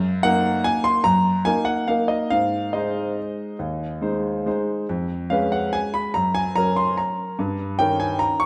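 A clear, intimate grand piano sits up front with its action noise audible, playing a graceful, elegant classical waltz alone in 3/4 at 142 BPM with uneven, rubato beats, ranging from Eb2 to Db6 and moving through Ebm/Gb, Ab, Db7/F, Gb and Eb7/G in a natural-sounding recital hall with moderate reverb, tuned to A4 = 439 Hz and cut from a longer piece.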